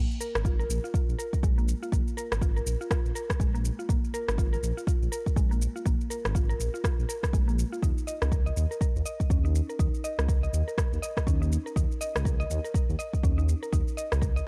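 Afro house with a spiritual, driving mood, cut from a longer piece, where a woody, mallet-like FM synth pluck plays chorused, sidechain-pumped arpeggios through analog delay and a filter sweep over a dark, rumbling detuned saw bass, a deep, tape-warm electronic kick sitting up front from 0.4 seconds, and an overdriven layer of electronic shaker and rim click, all in a dry, gritty cassette recording with digital ambience.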